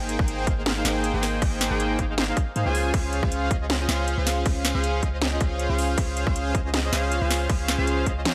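A soft supersaw riff and a deep, boomy 808-style bass open this bright, lush future bass clip, cut from a longer piece. The supersaw sits up front, smooth and full-bodied, with detuned unison sawtooth voices, a moving notch, sidechain pumping and a digital delay. Beneath it, the mellow sine bass carries a noise layer and pumps in the same way. A trap drum kit enters at 0.1 s with a sharp snare, metallic hats, crash cymbal and toms, and an overdriven, hard-clipped electronic kick joins up front at 0.2 s. Both drum parts are overdriven and have a small-room character. The groove moves in a half-time feel with a light sixteenth-note swing over an Abmaj9 chord that shifts to Dbmaj7 at 2.7 s, all set in a light reverb and digital ambience.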